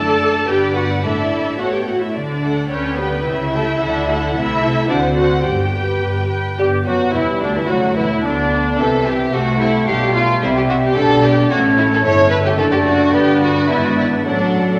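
Set in a straight 2/4 at 109 BPM, this spirited, graceful classical-period orchestral passage in D major, touching G major from 4.4 s before returning home at 11.0 s, pairs a lush, rich violin melody sitting in the background with an up-front, smooth second violin line, expressive viola accompaniment, mellow sustained French horn chords and a foundation of focused cellos and smooth double basses, while an airy, bright silver flute and a soft-attacked bassoon join at 6.6 s, all bathed in a wet scoring-stage reverb.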